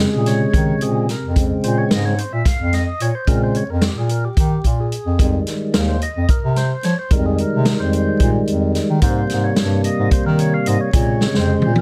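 Tense and brooding, this progressive instrumental in 7/8 is cut from a longer piece and features a fat, clean tonewheel organ soloing through a slow rotary speaker, while a mellow bass clarinet carries the bass line with jazz-style vibrato and scooped, soft-attack notes, and a punchy, rolled-off vintage drum kit joins at 0.3 seconds, closing with a fill at 11.2 seconds as light reverb ties the upfront parts together over chords moving from Bbm9 through Fm7 and Abmaj7 to Bbm7.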